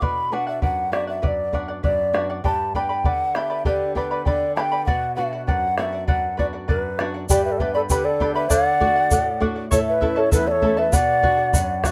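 A melancholic, wistful passage of Andean folk, cut from a longer piece and moving in a straight two-beat metre. A mellow, hollow large quena carries the melody up front, its wooden, end-blown tone airy and close, with vibrato and a crisp, chiffy attack on each note. Beneath it, a charango fingerpicks a shimmering accompaniment on its doubled strings, while a flamenco guitar adds fingerpicked support in the lower register and a round bombo sets the pulse. At 7.3 seconds the second section begins, and a second large quena enters with an expressive, airy counter-line below the lead while a grainy, band-limited egg shaker joins the percussion. Light reverb gives the ensemble a gentle sense of space as the chords move from B minor through G, D and A before settling back on B minor.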